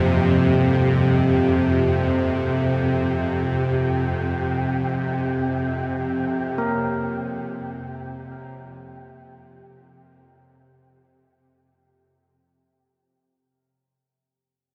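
Dark ambient drone in free time, this desolate fragment is cut from a longer piece and fades out over its full length, from 0.0 to 11.8 seconds. Up front, a tense, string-like drone with a bowed character sits low, built from detuned sawtooth and triangle tones with a noise layer, ring modulation and vibrato, swelling in slowly and sustaining through its own reverb until 11.9 seconds. Around it drifts an airy, breathy wind texture of tuned noise and sine tone, holding a single pitch with a slow attack and long release. In the background, soft carillon bells play mellow, bronze-toned arpeggios with a padded clapper, their ringing minor-third overtone trailing through tape echo and lasting until 13.5 seconds. The harmony rests on a single C5 over F chord, and a cathedral reverb with a 5.4-second decay bathes the whole in a dark, cavernous wash.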